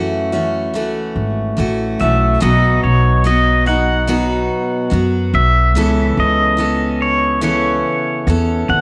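A straight, unhurried 4/4 pulse carries this short, hopeful cut from a longer acoustic folk piece with a pastoral glow. A woody, thumpy upright bass, plucked and up front, anchors the low end beside a bright, full-bodied jumbo steel-string acoustic guitar picking out the accompaniment. At the opening, a worn, slightly out-of-tune tine electric piano, lightly overdriven through a combo amp, adds a very quiet melodic touch before falling away at 1.5 seconds. A twangy, clean pedal steel guitar, played with fingerpicks and compressed, enters at 2.0 seconds and takes a solo from 2.4 seconds to the end, with slide and volume swells. The harmony moves from F#m7 to B and then settles on Aadd9/C#, all set in a moderate echo-chamber reverb.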